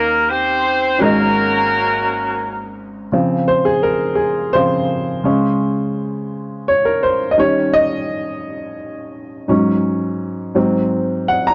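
Hopeful and soulful, this short gospel excerpt moves in an unhurried 6/8 lilt with a straight feel. A clear, tight horn section carries the melody at the start, its jazz-style voicing doubled in octaves, with gentle vibrato and soft attacks giving it a vintage glow up front in the mix. Beneath it, a woody upright piano supplies the accompaniment, its smooth tone and short sustain keeping the harmony rounded. The horns drop out by 2.8 seconds, and from 3.1 seconds the piano plays alone, wandering through dominant seventh and suspended chords before coming to rest on an Ab7. An echo chamber reverb and a dark, warm production wrap the whole passage in a mellow, old-fashioned atmosphere.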